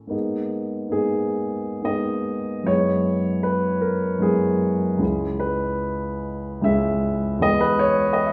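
Mysterious and wistful, this brief impressionist solo piano passage, cut from a longer piece, drifts in a rubato 3/4 between 61 and 82 BPM in G# minor, its open, long-sustaining grand piano spanning C#2 to E5 and moving through G#madd9, F#9sus4, C#m7 and E chords over 8.3 seconds, set in a wet recital-hall reverb heard from further back in the room.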